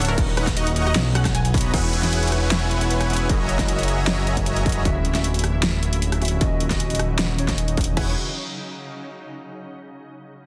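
Opening on a drop, this bright, playful future bass excerpt at 154 BPM in half-time E lydian starts with a thick, sidechain-pumping supersaw riff, a fat, saturated analog bass, a shimmering ambient pad in the background, a dubstep kit with a huge snare, and a unison pluck arpeggio, joined almost at once by a punchy pluck melody and a distorted electronic kick, before glassy digital keys with chorus and delay take up the accompaniment at 1.7 s alongside a very quiet downlifter as the chords move through E69, F#13 and Dmaj9.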